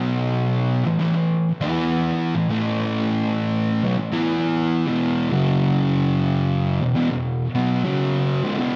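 A double-tracked fuzz guitar sits up front and carries this short metal fragment alone from 0.0 to 8.8 seconds, its picked, distorted tone thickened by tape echo. The mood is hypnotic and ominous, moving at 81 BPM in 4/4 with a 62% swing on the eighth notes that gives the heavy playing a loping gait. The guitar spans C#2 to E4 and cycles through the power chords B5, A5, E5 and F#5, returning to E5 and A5 as anchor points. Tuned slightly sharp to A4 = 441 Hz, the playing sits in a dark production with light reverb. The clip is cut from a longer piece and holds a single section throughout.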